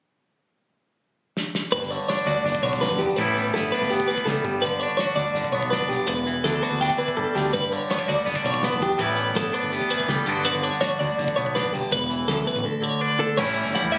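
Math rock and midwest emo in a bright, playful mood, cut from a longer piece and captured on a phone in a club-like room, where a loose indie drum kit with dark cymbals, a fat snare and a tight kick opens with a fill at 1.4 seconds before a scooped, up-front twangy electric guitar bathed in spring reverb, a compressed twelve-string electric guitar playing clean arpeggios through tremolo and slapback echo, and a growling, overdriven picked electric bass enter together at 1.7 seconds over shifting Gmaj7, A7sus2 and Em11 chords, with a second drum fill at 7.2 seconds.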